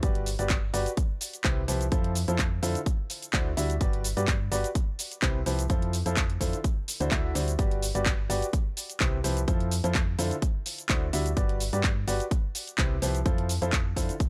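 Joyful and euphoric, this piano house excerpt moves at 127 BPM in G major with a light 16th-note swing, cycling through Gmaj7, Cmaj7, Fmaj7 and D9 from 0.0 to 14.3 seconds. A clear, intimate grand piano plays the riff up front with audible action noise, while a round, dark FM bass with a fast attack pumps underneath it, both breathing with sidechain compression. A punchy, layered electronic kick sits forward in the mix beside a tape-warm house kit of handclaps, hi-hat and shaker, re-recorded in a small room, giving the whole a dry, gritty hardware character.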